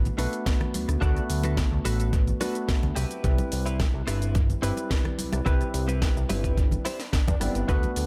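Nu-disco at 108 BPM in a straight 4/4, this groovy, sunny excerpt moves from D6 to Cmaj7 over a fat, detuned analog bass with a moving notch and a gritty, thumpy electronic kick drum sitting up front. A barky tine electric piano, lightly overdriven through a combo amp with subtle chorus, provides accompaniment beside a clean, direct-recorded electric guitar riff treated with analog chorus, while a layered house kit with a cracking snare, rim click and shaker and bright, dry congas in the background fill out the groove. Dub echo trails the piano, guitar, kit and congas through an echo-heavy mix with light digital ambience, and a faint electronic swell appears at 6.8 seconds.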